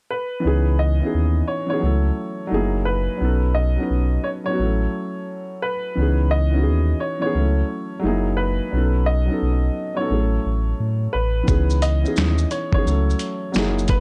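A deep, full sub bass with octave anchors this hazy, reflective lo-fi hip hop excerpt with a swung feel, beneath a soft, mellow felt-muted upright piano playing filtered accompaniment and a clear, woody, slightly detuned upright piano carrying the filtered melody, until a gritty, compressed soul sampler-style drum kit with a thumpy kick, finger snaps, hi-hat, shaker and snare arrives at 11.5 seconds in a dark, lightly reverberant mix.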